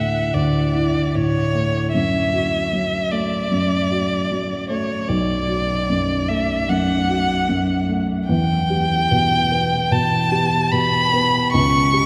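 Romantic classical duo for violin and grand piano, tender and warm in mood, moving with rubato in four. A single bowed violin carries the melody from start to finish of this 12.1-second fragment of a longer piece, its tone rich and focused with vibrato and a smooth top, placed up front. Beneath it, a dark, mellow grand piano supplies the accompaniment throughout, natural in sound and also close in the mix. The harmony passes from A over D through D/F#, Bm7 and Em before landing on a rootless A7/C# at 11.5 seconds. A long, wet cathedral reverb surrounds the duo, giving the sense of a church or concert hall.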